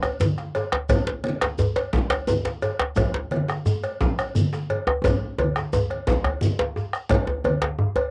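West African traditional drum ensemble in a straight 12/8, earthy and powerful, where a deep, saturated bombo, a metallic cowbell, thick-skinned, low-tuned congas and two tight, cracking djembes (one soft-handed and band-limited, the other compressed and up front) drive alongside a grainy, distant shekere that drops out at 7.0 seconds, with a drum fill from 5.0 seconds leading into a brief closing section, all captured in a snug booth on a home cassette recording cut from a longer piece.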